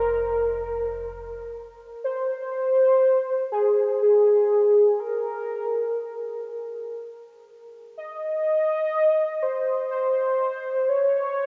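Spacious and melancholic, this slow ambient fragment in F minor moves at 60 BPM in a straight 3/4, tuned slightly sharp to A4 = 441 Hz and cut from a longer piece. A velvety, detuned synth lead sits up front and carries the melody from start to finish, its chorus, vibrato, gritty vintage-sampler texture and diffuse delay drifting through a vast cathedral reverb. A deep, dark analog bass holds F under an Fsus4 chord only until 1.9 seconds, after which the harmony falls away and the melody hangs alone in the echoing space, softened by a muffled cassette-tape sheen.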